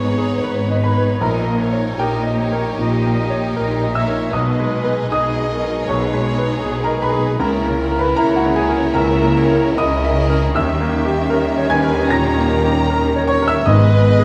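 In a freely breathing 4/4 with rubato, this brooding, passionate passage from a romantic movement for piano and orchestra unfolds as one continuous stretch. The clear grand piano carries the melody up front with a natural, short-sustaining tone across a broad range, while a warm chamber violin section shares the tune with vibrato, portamento and a smooth top. Behind them, a second violin section adds a rich, close second line, and violas supply distant, even accompaniment. A dark French horn section holds soft-attack sustained chords from a roomy distance, and cellos and double basses anchor the bass, the basses expressive and near. At 10.6 s soft-mallet timpani enter very quietly with a round tone as the harmony tightens onto a tense dominant chord before returning to the home minor chord, the ensemble bathed in a wet scoring-stage reverb.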